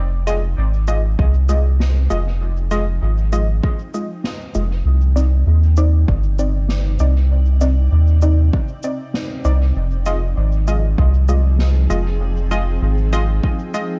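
A round, soft sub bass sits up front in this hazy, deep ambient dub excerpt, joined at 1.2 s by an overdriven electronic kick with a deep, layered punch. Muted, detuned sawtooth chord stabs with chorus and dub echo drift over an acoustic cabasa and medium-tuned snare, which carry their own small-room ambience and echo, while a cloudy, blurred granular pad fades in beneath everything. The harmony moves from Fm7 to Cmadd9 and back to Fm7, all set in a dark, reverberant production.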